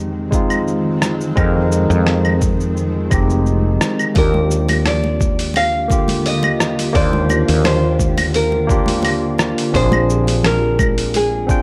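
A dark, lightly reverberant production frames this relaxed, smooth sunset chillout excerpt at 86 BPM, where a barky tine electric piano with digital delay and a shimmering, detuned pad carrying 12-bit sampler grit sit over a growly, round fretless bass, while a gritty, overdriven sampler-style kit of claves, hi-hat, rim click and shaker joins a thumpy electronic kick at 0.3 seconds, and a fingerpicked nylon-string guitar melody with audible finger squeak and delay enters at 4.2 seconds alongside very quiet, soft-handed congas, as the chords move from Fm7 through Ebmaj9 to Bb9.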